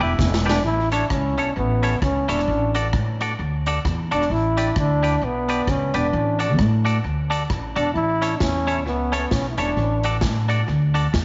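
Cheerful and bouncy, this ska excerpt at 132 BPM with a swung feel in A mixolydian opens with a raspy, gritty tenor saxophone blast and a drum fill before a breathy, whispered trombone takes the intimate, up-front melody from 0.5 to 10.0 seconds with vibrato and tape echo, over a bright, twangy clean electric guitar bathed in spring reverb, a woody, thumpy pizzicato upright bass, and an airy big-room street-band drum kit with a boomy kick and echoing rim clicks.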